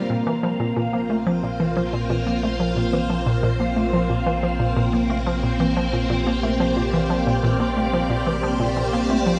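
A lush, vintage string machine holds sustained chords up front through phaser and ensemble chorus, joined by a hollow, bouncy square-wave pluck riff warbling with chorus and tape echo, a fingerpicked Celtic harp ringing arpeggios in the background until 3.0 s, a round sine sub bass on Bb from 0.1 s, and an airy, wind-like tuned noise texture breathing in from 1.2 s, all set in a moderate plate reverb for a luminous, cosmic ambient passage at 90 BPM in Bb major resting on a Bbsus2 chord.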